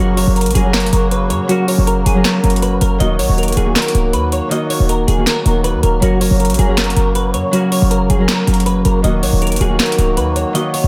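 A dreamy mix soaked in moderate plate reverb and small room ambience gives this hard-hitting, menacing hip hop and trap passage, cut from a longer piece, a hazy, enclosed glow. An up-front 808-style bass, punchy and tight with a sine core, a noise layer, a fast attack and a decaying tail, anchors the half-time feel. From 0.2 s an electronic trap drum kit pushes through overdrive, with a sharp snare, metallic hi-hats and handclaps. A clean, compressed electric guitar carries the fingered melody, colored by ensemble chorus and tape echo. Beneath it, a fingerpicked Celtic harp rings out the accompaniment, while a reedy, nasal hand-pumped harmonium breathes sustained chords as the harmony alternates between Gb and Ebm.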